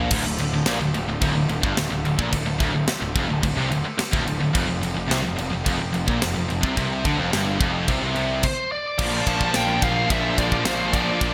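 An up-front acoustic metal drum kit drives this relentless, heavy heavy-metal excerpt at 108 BPM in straight 4/4, its airy, polished sound marked by bright cymbals, a high-tuned snare and a tight kick across crash, ride, snare and kick drum. Two picked high-gain guitars sit in the background playing the riff, joined by a very quiet, double-tracked sludgy guitar with a warm overdriven tone. A growly fuzz-picked electric bass holds the low end, while a very quiet chamber organ on a hollow clarinet-reed solo stop, with chiff and tremulant, sustains chords underneath. The harmony moves from D minor to F5 and then to Bb at 9.0 seconds, after a stop at 8.4 seconds where a dark, bluesy lead guitar enters up front with a distortion-laden melody. The bright 1980s-style digital production places it all in light reverb and small room ambience, and the clip is cut from a longer piece.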